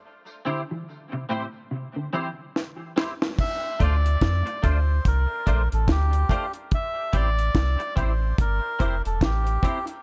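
Set in a studio ambience with the drums and sub bass up front, this meditative, heavy dub reggae excerpt moves at 72 BPM in D minor with a swing on the sixteenths. It opens on a break, with a bright, twangy electric guitar accompanying a mellow, fingered electric guitar's arpeggios, both clean and treated with chorus and dub echo, until a drum fill at 2.6 seconds brings in the dry, smooth acoustic kit with its high-tuned snare and tight kick. From 3.4 seconds a reedy, breathy melodica carries the melody with its own dub echo, and at 3.8 seconds a round, soft sub bass enters to sustain beneath the Dm7 and Am7 chords.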